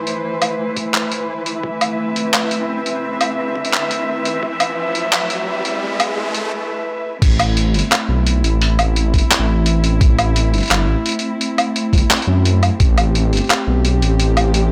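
A half-time drum and bass groove at 172 BPM in 4/4 drives this heavy, dark fragment in A minor, built on a thumpy, pitched-down electronic kick and a gritty, tape-toned sampler kit of crash, handclaps, hi-hat and woodblock, both compressed and re-recorded in a small room. A dark cello section holds bowed sul tasto chords with light vibrato, close and intimate, carrying 12-bit sampler grit and sidechain pumping, while a bright, pulsing gated texture with chorus hovers beneath it until 6.5 s. The opening build-up puts a filter sweep on the cellos and brings in an electronic riser, then a brief break gives way to the drop at 7.2 s. There a deep, rumbling detuned saw bass enters up front, its unison voices beating as it fills the low end. The mix sits in light reverb.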